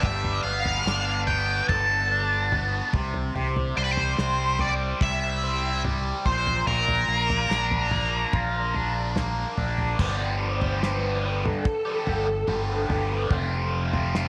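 Hazy, hypnotic psychedelic rock opens with a dark, up-front octave-fuzz lead guitar carrying the melody through wah, distortion and slapback echo over a bright, double-tracked overdriven guitar riff with phaser, a growling fingered bass with overdrive, and a dry, rolled-off 70s drum kit with tight kick, snare, toms and crash cymbal in a moderate echo-chamber reverb, until the lead stops at 9.1 seconds and a silky, mellow string machine with ensemble chorus holds soft sustained chords from 10.0 to 13.3 seconds.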